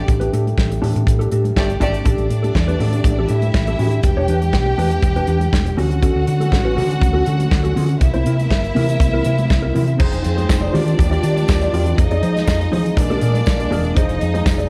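Driving, danceable disco cut from a longer piece, built on a punchy, up-front studio drum kit with bright cymbals and a round, dark hollow-body bass, while a compressed, mellow electric guitar comps beneath a lush, bowed violin section with clear vibrato and a distant, roomy French horn section holding sustained chords in the background, very quiet ringing congas adding color throughout and a jingly tambourine joining at 10.5 seconds as the harmony settles into a minor groove, all set in a moderate large studio reverb.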